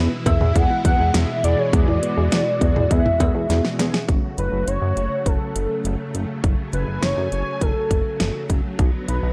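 Cut from a longer synth-pop piece, this melancholic, nocturnal passage opens on dark, brassy synth brass in the background, warbling vintage string-machine violas and a glossy, chorused synth bass up front, joined at 0.3 s by a velvety lead melody with tape echo, a very quiet soft round pluck playing arpeggios until 4.1 s, and a punchy electronic pop drum kit with fat snare, metallic hats, cowbell and toms in gated reverb, whose fill at 3.5 s carries the harmony from E to F#m.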